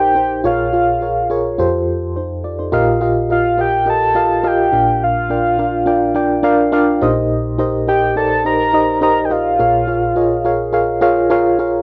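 A dry, close 1970s-style studio sound with light reverb frames this nostalgic, uplifting pop excerpt, where a soft, round, octave-layered synth lead with a full-bodied sub-octave, chorus and phaser sings the melody up front over a mellow, warbling FM electric piano whose dark, vintage tone carries chorus and tremolo, before the piano closes with a short fill from 10.7 to 11.8 seconds.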